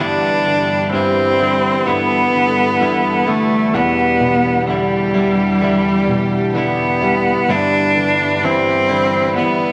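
A wet spring reverb gives this short cut from a longer piece a roomy studio ambience, framing a tender, emotional pop ballad in G major at a slow 64 BPM in straight 4/4. A bright, focused bowed cello carries the melody up front for the full 9.7 seconds, its single player singing with expressive vibrato. Beneath it, a concert grand piano plays intimate accompaniment with deep bass, short sustain and audible action noise. A clean, picked electric guitar, recorded direct and compressed, adds arpeggios coloured by a vibrato effect, while a lush, woody string section holds sustained chords in the background. The harmony moves from G6 to Em7 at 3.7 seconds and returns to G6 at 7.5 seconds, keeping the mood gentle and heartfelt.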